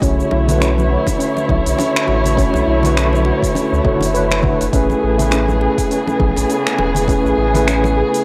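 An excerpt of swung sixteenth-note sunset chillout at 102 BPM, where an overdriven deep house kit of finger snaps, metallic hi-hats and shaker plays alongside an overdriven electronic kick that stops at 7.2 s, close, hard-handed congas sit in the background, and a round sine sub bass moves beneath a clean tine electric piano with low-pass filter and tape echo, dark bowed chamber strings held up front, and a mellow, shimmering steel pan playing echoed arpeggios over Bm11 and Amaj9 in a smooth, lightly reverberant, gritty recording.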